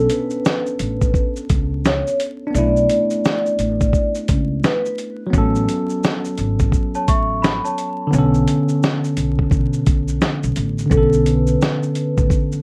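Lo-fi hip hop in B minor at 86 BPM with a swung 16th feel, melancholic and reflective, cut from a longer piece and sitting under a layer of vinyl crackle in a small, moderately reverberant room. A gritty, compressed sampler-style drum kit with a thumpy kick, shaker and hi-hat sits up front beside a woody pizzicato upright bass, while a bell-like tine electric piano carries the Bm9 and A69 chords through filtered plate reverb. A mellow, vintage-toned vibraphone with slow motor vibrato plays the melody until 5.0 seconds and returns at 10.9 seconds, and a delicate celesta line with tape echo rings out briefly from 7.0 seconds.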